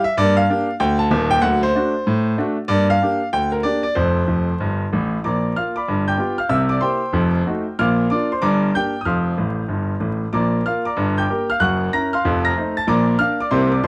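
Swinging in 4/4 at 189 BPM, this exuberant, playful stride piano excerpt in Bb major features a solo grand piano, clear and up front, spanning Eb1 to Bb6 and dropping in short fills at 4.3 and 9.4 seconds, all set in a dry, close 1970s-style studio sound with light reverb and a layer of vinyl crackle.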